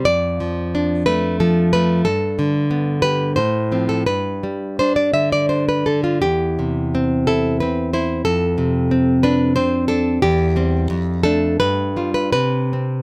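Warm and nostalgic, this short romantic fragment for solo classical guitar moves in an unhurried 3/4 at roughly 75-95 BPM, with a flexible rubato feel. A fingerpicked nylon-string guitar sits up front, spanning E2 to E5 through chords built on Dm/F, G, F/A, C/E and F6 before reaching G7 at 11.6 s. Light reverb gives the acoustic tone a gentle sense of space.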